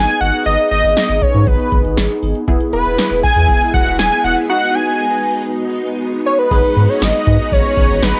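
Synth-pop excerpt at 119 BPM in G# minor with a driving, cool mood, where a fat, detuned sawtooth lead carries the melody up front through chorus, phaser, tape and analog delay over a punchy, funky polysynth comp with ring modulation, a round, dark triangle-and-sine bass and an electro drum machine with deep kick, punchy snare and metallic hats, while a shimmering vintage string machine joins with sustained violin chords from 2.5 seconds, a break runs from 4.5 to 6.5 seconds, and the whole sits in a small booth with the grain of a home cassette recording.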